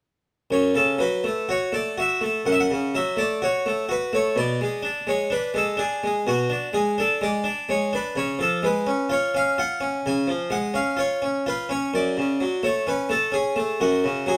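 Closely and clearly recorded in a moderately reverberant large studio, this brief fragment of a longer baroque-style suite movement features a solo Flemish-style harpsichord with three sets of strings, its plucked tone full, brilliant and airy and placed up front. Introspective and flowing, it moves in a rubato 4/4 at about 63 BPM in F# minor, tuned to A4 = 438 Hz, with the harpsichord sounding from 0.5 to 14.4 seconds across a range from F#2 to G#5. The harmony passes from F#m through G#dim/B and C# before settling back on F#m at 11.9 seconds.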